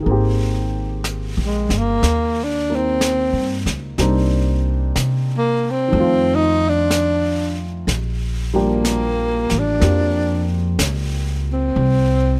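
A wistful, smoky slow-swing jazz ballad at 62 BPM, drawn from a longer piece, with a breathy tenor saxophone entering at 1.5 s to carry an intimate, whispered subtone solo full of vibrato and scooped pitches. A dark, mellow upright piano comps beneath it until 11.8 s, while a woody, thumpy pizzicato upright bass sits up front and a brushed kit with a high-tuned snare and hi-hat keeps soft time. The chords move from Abmaj9 through Cm9 and F7 to Bb6, and the close, detailed sound carries little room reverb.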